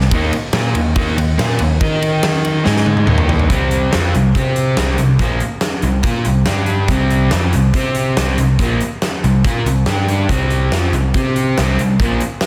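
A crunchy, double-tracked overdriven guitar riff drives this heavy, aggressive hard rock excerpt at 141 BPM in 4/4 from the first beat, sitting up front with spring reverb over a growly picked electric bass and a huge arena drum kit with a fat snare, punchy kick and natural big-room sound. The riff moves between Eb5 and Ab5 chords until a drum fill from 2.7 to 3.5 seconds leads into a second section built on C5 and G5. The modern master is dense and heavily limited, with light reverb.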